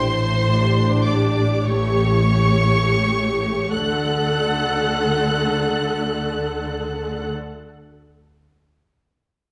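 A lush, close violin section carries the high melody with vibrato over a smooth second violin line, up-front dark violas entering at 0.5 s, expressive symphonic cellos and rich bowed double basses in this melancholic, yearning slow romantic movement for string orchestra in a rubato 6/8, cut from a longer piece, which slows through its opening phrase as A7sus4 gives way to A7 and resolves to D at 3.7 s, set in a wet scoring-stage reverb.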